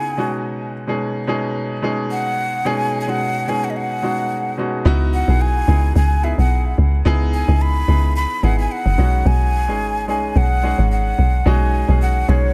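A breathy, mellow jazz flute carries the melody from the opening moment over a clear, intimate grand piano, which plays accompaniment with its action noise audible in the natural sound. This is a deep, late-night amapiano piece at 109 BPM in 4/4, with a 55% swing on the sixteenths and tuning set to A4 = 444 Hz. The close-miked metal flute sings with vibrato and tongued notes, trailed by an analog delay. At 4.9 seconds a deep log drum bass enters up front, its round, dark, percussive tone built from FM with a noise layer, striking with a fast attack and decaying after each hit. The harmony moves from B69 to C#m11 and back to B69 within a single section. The studio ambience gives the mix an echo-heavy feel, and the clip is cut from a longer piece, ending at 12.5 seconds.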